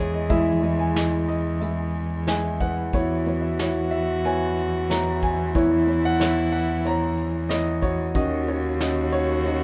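Lightly reverberant, this short cut from a hopeful, heartfelt acoustic folk-pop ballad at 92 BPM sets a dark, mellow baby grand piano melody up front over a close, intimate, bowed cello bass with light vibrato and an airy bow, while a clear, classical-style French horn sings a second line and a distant, roomy brush drum kit with a punchy kick and rolled-off top joins at 0.3 s, the harmony resting on Emaj7 before shifting to D#m7 at 8.2 s.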